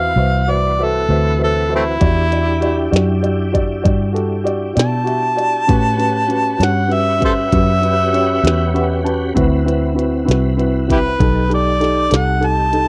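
A dry, close recording with a 1970s studio feel carries this rollicking, swaggering slow blues cut from a longer piece, in a straight 12/8 at 65 BPM in D mixolydian, moving from D13 through Em7 and A13 to a B7alt turnaround. Up front, a warm, overdriven harmonica with slapback echo leads in a jazzy solo style full of vibrato, tongue slaps and scooped notes, over a round, punchy, foam-muted electric bass. A dark, mellow baby grand piano accompanies and adds a fill at 8.4 seconds, a smooth tonewheel organ holds key-clicking chords through chorus vibrato and a slow rotary speaker, and an electronic drum kit with a deep kick, tiny snare and clicky hats enters at 2.0 seconds.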